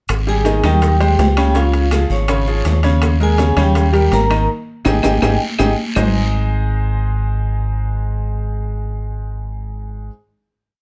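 A dark, lightly reverberant production frames this short, complete salsa piece in Ab major, sunny and festive at a straight 163 BPM in 4/4. A deep, round fingered electric bass sits up front, playing a tumbao that anticipates the chords, while a brilliant, woody upright piano with long sustain lays down a polished montuno in octaves. Over them a vibraphone with medium mallets and fast motor vibrato rings out metallic call phrases built from short motifs, partly doubled in octaves. In the background a full hand-percussion section drives the groove: high-tuned congas with slaps and open strokes, tight vintage bongos in steady eighths with hand bell, ringing metal-shell timbales with shell pattern and bell, woody claves on a two-bar time line and grainy maracas. A raspy, distant guiro joins them. A band accent from 4.5 seconds, topped by a drum fill, brings the percussion to a stop at about 6.0 seconds. 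The bass, piano and vibraphone then hold the final Ab chord through to the close.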